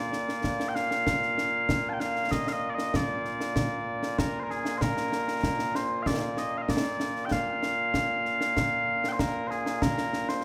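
A mellow, sweet set of small bagpipes carries the melody up front in this stirring, proud excerpt of Scottish traditional pipe music, played in Bb major at 96 BPM in a straight 4/4. Concert snare and bass drum join at 0.1 seconds, sounding close and dry with bright cymbals, while the pipes ring out in a recital hall reverb that lends a churchlike bloom to the roughly ten-second passage.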